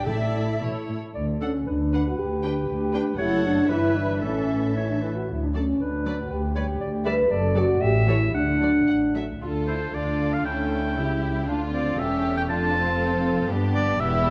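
A dark, roomy French horn section stands up front with sustained chords from 1.4 to 9.1 seconds in this quick, spirited and graceful classical-period movement for symphony orchestra, cut from a longer piece in 2/4 at 109-122 BPM with a rubato feel. Two muted chamber violin sections carry the melody and a second line, veiled and bowed with vibrato. Beneath them sit a lush symphonic viola section and muted cello and double bass sections holding the bass. At the very start, a large flute ensemble sounds a pure, expressive, close-miked note while very quiet timpani strike an articulate A2 with hard mallets. A clear, distant clarinet sings a second line through the D major opening. Shortly after the music turns to D minor at 9.4 seconds, a solo oboe, up front with light vibrato, enters at 9.7 seconds and takes over that role. A wet scoring stage reverb surrounds the orchestra, and the production is warm.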